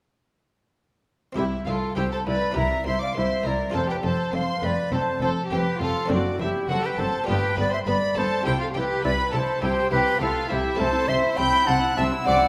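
Set in a recital hall with a generous reverberant glow, this festive, lively baroque-style concerto movement excerpt in C major moves at 102 BPM in a straight 4/4, with a muted, lute-like buff-stop harpsichord entering at 1.3 seconds in the background just before everything else. An airy, mellow silver concert flute carries the melody up front with expressive vibrato and a soft attack, alongside a violin section with a gut-string, period-style sheen that also carries the melody, while a second violin line and a background viola section fill the middle. A rich double bass section and a nasal-toned cello section anchor the bass as the harmony moves from C through F, D7/F#, and G7 before settling back on C at 8.5 seconds.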